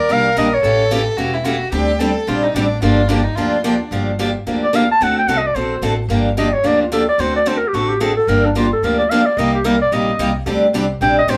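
A breathy clarinet and an earthy, bowed violin open this swinging, virtuosic excerpt of fast acoustic string swing in G minor at 220 BPM, over a bright, boxy picked steel-string guitar and a woody, growly pizzicato upright bass in a moderate studio room; the violin drops out at 3.9 seconds and the up-front clarinet takes a solo with vibrato, subtone and scooped notes through to 11.4 seconds over chords moving between Gm7, D7 and Cm7.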